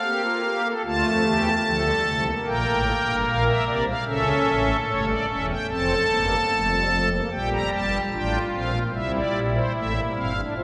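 A shimmering, soft pipe organ on its celeste string stops plays up front and alone, voiced in a romantic way, in this serious, contemplative fragment of a baroque-style four-part fugue in G minor at 74 BPM in a straight 4/4, moving from Gm through Dm, A7 and Fadd9 before a new section turns on Gm and C at 7.3 seconds, all carried in the long wash of a cathedral's reverb.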